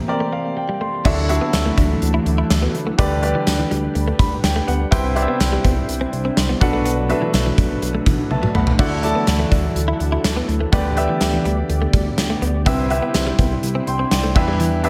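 A clear, up-front baby grand piano and a glassy FM pad open this moody, nostalgic 1980s-style pop excerpt, with the piano playing a short fill over a brief break as a clean, direct-recorded electric guitar slips in at 0.1 seconds with a chorused riff trailing a diffuse ambient delay. At 1.1 seconds the full band arrives at 124 BPM in a straight 4/4: a gated 80s drum kit with a tight kick, medium-tuned snare, bright cymbals, tambourine and toms sits up front, while a glossy, chorused synth bass built from pulse and sawtooth waves anchors the low end. Mellow, detuned synth brass adds dark, round stabs in the background, and the ethereal pad holds slow-attack sustained chords behind everything. The harmony drifts through Dadd9, G/D, Cmaj7 and Bm7 before cycling back, with a second piano fill at 4.0 seconds and a drum fill at 8.3 seconds, finally settling on Em7. A plate reverb and small room ambience soak the mix in a dreamy haze.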